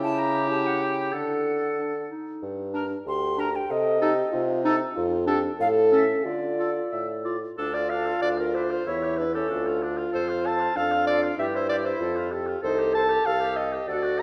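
Dark and steeped in the long reverb of a recital hall, this fragment of a longer piece carries a stormy, dramatic mood. It is a quick classical-period movement for wind quintet at 94 BPM in a straight 2/4, opening on a C# diminished chord and settling into D minor from 5.0 s. An airy, distant silver flute sings the melody with a straight tone and crisp attack, while a roomy oboe with light vibrato traces a second line. Up front, a smooth-topped clarinet joins a warm French horn in the accompaniment, and a mellow bassoon anchors the bass. All five play throughout, and from about 7.6 s the harmony moves through F and a rootless D9sus4/G before closing on Cm6.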